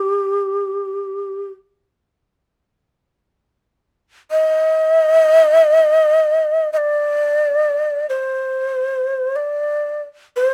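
A breathy, mellow end-blown bamboo shakuhachi plays alone and up front for the whole 10.5 seconds, its tongued notes and vibrato moving between G4 and Eb5 in light reverb, giving this brief passage of Japanese traditional chamber music, cut from a longer piece, a calm and austere mood.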